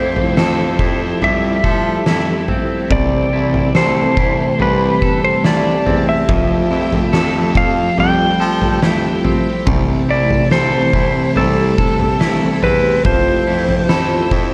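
An oversized, low-tuned drum kit sets a straight 4/4 pulse from 0.2 seconds, its punchy kick and fat snare sitting up front with a gritty, saturated edge in a bright stone room, with toms completing the kit. This floating, dreamy dream pop excerpt, cut from a longer piece, moves between Fmaj9 and C6 chords. A clean, dark lap steel guitar carries the melody with slide and volume swells, trailed by delay and shimmer reverb, as a slightly broken-up, twangy electric guitar picks arpeggios with subtle chorus. A vintage sawtooth string machine in a violin voice holds soft-attack chords, its ensemble chorus giving a shimmering, full-bodied glow, and a baritone saxophone plays the bass line with vibrato and a smooth top. A very quiet, bell-like celesta adds delicate texture until 6.7 seconds and returns at 13.9 seconds. The production is dark and warm, set in a moderate plate reverb.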